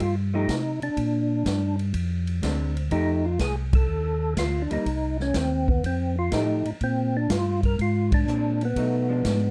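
A percussive tonewheel organ carries the melody with a fat, clicky third-harmonic attack, its tone turning through a slow rotary speaker and chorus vibrato, while a second, mellow and round organ voice holds down the bass beneath it. A swinging big-band drum kit with a punchy kick and medium-tuned snare drives this greasy soul jazz organ trio groove, joined at 0.3 seconds by a dark, clean, picked hollow-body jazz guitar accompanying over F9 and Bb9 changes. The band hits accents together at 3.6 and 8.0 seconds in this short cut, framed by light reverb and a dark production.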